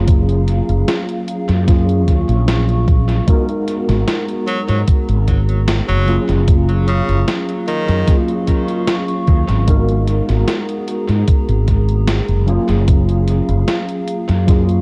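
A mellow, clean tine electric piano anchors this melancholic, woozy vaporwave excerpt from the start, sitting up front with an ensemble chorus and tape echo as it lays down lush chords that drift between major and minor ninth and eleventh colours. Beneath it, a dark, round fretless electric bass carries the low end, while a warbling, detuned pad with a slow attack and long release hangs softly in the background, its lo-fi 12-bit grit and built-in reverb giving it a nostalgic haze. A thumpy, sampler-style electronic kick drum sits forward in the mix, joined by a quieter 80s digital drum machine playing hi-hat and a snare drenched in gated reverb and tape echo. At 4.5 seconds an edgy tenor saxophone steps in with a brief solo phrase touched by light vibrato and tape echo, falling silent by 8.2 seconds. The whole piece has an echo-heavy, cassette-worn sound bathed in light reverb, unhurried and dreamlike.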